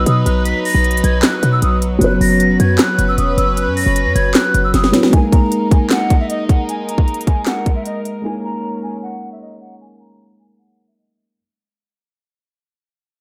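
A dreamy, reverb-soaked mix opens this brooding half-time trap excerpt, where a breathy, hollow jazz flute with vibrato and delay sings over a boxy, deep-toned grand piano and reedy gut-string chamber strings, all three muffled by a low-pass filter, while a punchy sine 808 bass stops at 4.9 seconds and an up-front kit of hard-clipped kick, sharp snare, crisp hats and handclaps plays a fill from 4.7 seconds before a filter sweep and fade-out carry the piece from 5.1 seconds to its end.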